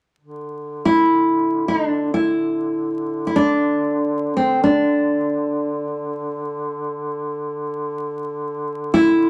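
Caucasian folk in the manner of a lament, this short excerpt cut from a longer piece moves in free time with a solemn, longing mood. A mellow duduk enters at 0.2 seconds and holds a low drone on D3, its tone punchy and vintage, with vibrato and scooped notes in a folk style, sitting well back in the balance. At 0.9 seconds a nylon-string guitar comes in up front, fingerpicked with a deep classical character, carrying the melody between C4 and E4 and letting finger squeak show. Both parts carry on to the close at 9.3 seconds as a single unbroken section. A wet studio reverb gives the room a brief tail, while vinyl crackle lends an aged patina to the sound.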